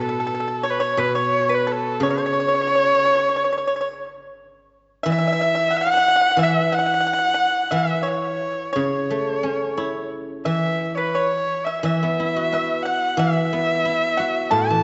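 Festive and graceful, this rubato Chinese chamber ensemble excerpt at 89 BPM sets a dark, intimate erhu melody with light vibrato, portamento and an airy bow up front over a bright, percussive pipa second line and a silvery, ringing guzheng accompaniment, all bathed in a wet concert hall reverb with a dark, warm production and a faint mains hum.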